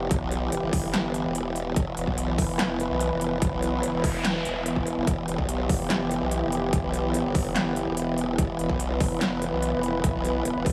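A formant-sweep wobble bass sits up front in this heavy wobble dubstep passage. Its wobbling sawtooth-and-sine tone is compressed, thickened with chorus and overdrive, and holds sustained notes low in the register from the very start. Above it, a lush, bright supersaw pad of detuned unison sawtooths sustains chords over E minor, with a soft attack and long release, shaped by a low-pass filter and sidechain pumping. The mood is chaotic and menacing, moving at 145 BPM in 4/4 with a half-time feel, in E phrygian and tuned slightly sharp to A4 = 441 Hz. From 0.1 seconds, an overdriven electronic kick with a punchy, layered punch drives the groove alongside a big-room dance kit of handclaps, crisp hi-hats and a punchy snare, also overdriven. A background electronic noise sweep passes between 3.9 and 5.1 seconds, and light reverb gives the cut from a longer piece a touch of space.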